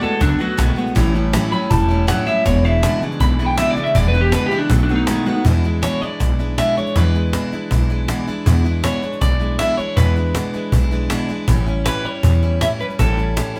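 A band playing live in one room fills a wet studio reverb, giving this rowdy, rollicking rockabilly excerpt a lively, roomy sound. At 159 BPM in a straight 4/4 and E mixolydian, a thumpy, woody upright bass sits up front, plucked pizzicato on steel strings, while a snappy cajon struck with hard hands cracks close to the ear. A bright, full-bodied picked steel-string acoustic guitar with fresh strings carries the accompaniment throughout. One twangy, slightly broken-up electric guitar through a small old amp carries the melody with a lo-fi edge, taking a clean solo over the opening section before the change at 5.5 seconds. A second twangy electric guitar through a small old amp plays a low riff that stops at 5.4 seconds, as the chords move through B7, A7 and E7 to settle on E7 and then A7 near the close.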